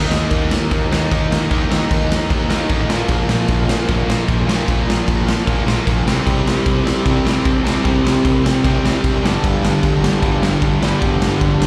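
A live club recording with light reverb carries this rowdy, energetic punk rock excerpt in a straight 4/4, where a gritty, saturated garage drum kit with punchy kick, crash and snare sits up front, two overdriven stack guitars riff in the background (one with slapback echo) over a growly fuzz bass, and a third, very quiet double-tracked guitar joins at 6.3 seconds as the chords move through Eb5, Bb5, C5 and G5.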